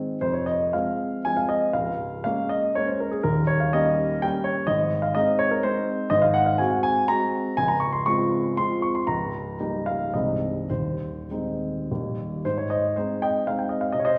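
A baby grand piano sounds present and polished, set in a recital hall whose reverb of 1.3 seconds hangs around the notes even as the instrument stays up front, though the listener seems placed farther back in the room. This brief passage, cut from a longer piece, is a romantic classical dance in 3/4 and Ab major, graceful and proud, with dotted rhythms and a rubato feel that lets the tempo drift between 95 and 137 BPM. The solo piano spans a broad range from C1 up to Db6. Its harmony begins on F minor and passes through Bbm7 over Db and Eb7 before settling on Ab, then moves through Ab7, Dbmaj7 and Eb7 over Db toward a cadence on Eb. At 12.4 seconds a new section begins on Ab and carries on until the passage breaks off at 14.2 seconds.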